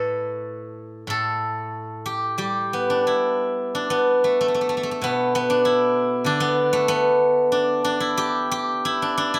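Elegant and serene, this brief excerpt from a longer Chinese traditional piece features a steel-string zither playing solo throughout its 9.4 seconds. The tempo sits around 89-100 BPM in 2/4, though the feel is rubato and flows freely. Played with fingerpicks, the acoustic zither has a bright, silvery, ringing tone and spans a range from A2 to B5. It sits up front, captured by close, detailed microphones with a light touch of reverb. An opening passage gives way to a second section at 3.7 seconds, which carries on until the cut.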